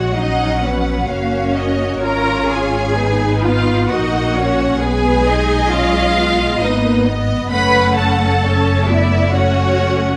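A rubato 3/4 pulse at 63-69 BPM carries this tender, lyrical slow romantic movement for string orchestra, cut from a longer piece, in which a smooth, even violin section sings the melody over an expressive second violin line with portamento, a lush viola section supplies the accompaniment, a soft-attacked cello section with portamento and an up-front double bass section hold the bass, all bowed with vibrato and set in a moderate concert-hall reverb.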